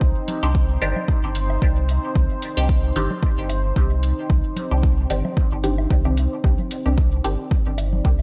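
An overdriven, up-front electronic kick anchors this cavernous, meditative dub techno excerpt in C minor at 112 BPM with swung 16ths, alongside a clean sine sub bass and a slow-attack detuned pad holding a Cmadd9 chord under sidechain pumping, while metallic overdriven hi-hats enter at 0.3 seconds, muted wave-folded chord stabs with phaser and dub echo arrive at 0.4 seconds, and tape-hued congas and woodblock sit in the background.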